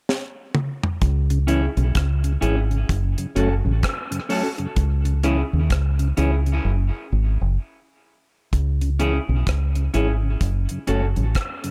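Deep and hypnotic, this dub reggae excerpt opens with a drum fill on a dry kit with high-tuned snare and tight kick, then settles into a swung groove where a dark, round, foam-muted fingered bass sits up front beside the drums, a mellow tonewheel organ turns slowly through its rotary speaker and chorus vibrato, and a clean, hollow-body semi-hollow guitar trails tape echo across C#m and F#m changes, with a break from 6.6 to 8.5 seconds on F#sus2 in an echo-heavy mix with light reverb.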